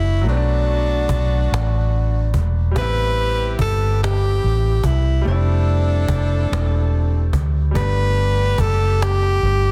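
A close-miked tenor saxophone carries the melody up front, its jazz-style subtone and vibrato giving this slow six-eight R&B piece an intimate, tender mood at 48 beats per minute. Beneath it, a dark, round electric bass with a vintage foam-muted tone sits punchy and prominent, while a baby grand piano adds clear, natural accompaniment with long sustain and audible action noise. From 0.3 seconds a loose pop-style horn section plays stabs in the background, and a snappy acoustic cajon with snares keeps time from a live-sounding spot behind the band until 9.2 seconds. The harmony moves through Bm7, Am9, Fmaj9 and Gmaj7 in a small room ambience. The fragment is cut from a longer piece and has a dense, heavily limited modern master.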